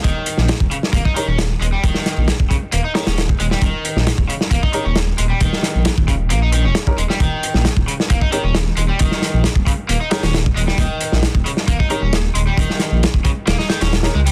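A crunchy, gritty breakbeat kit with a tight kick, medium-tuned snare and rolled-off top opens this funky, raw breaks excerpt at 134 BPM, alongside a deep, rumbling detuned saw bass and a bright, overdriven semi-hollow guitar riff trailed by dub echo over an Eb7 chord. From 1.2 seconds, clear, polished baby grand piano stabs join with their own dub echo, and the kick drops out at 13.5 seconds. The mix is dry, dense and heavily limited, with the drums and bass sitting up front.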